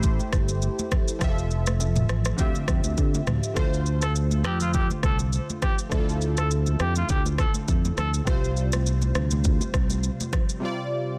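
A clear, punchy trumpet carries the melody in this breezy, romantic afrobeats excerpt, entering at 4.0 seconds with scooped notes and a vintage pop-style tone treated with a delay, playing until 8.1 seconds. Beneath it, the electronic drum kit sits up front with a deep kick, rim clicks, shaker and toms, its snare slightly roughened by soft clipping, all riding a gentle 16th-note swing. The fingered electric bass is warm and direct, also placed up front, while very quiet congas add a ringing, high-tuned layer played with hard hands in a close, dry space. Analog keys fill in the harmony with a round, detuned sawtooth sound that has a fast attack, decaying notes, a filter sweep, chorus and phaser, moving through Am7, Fmaj7 and Dm11 before settling on Dm7 and then Csus4. A digital ambience surrounds the parts, and the dense, heavily limited modern master gives the clip a polished finish.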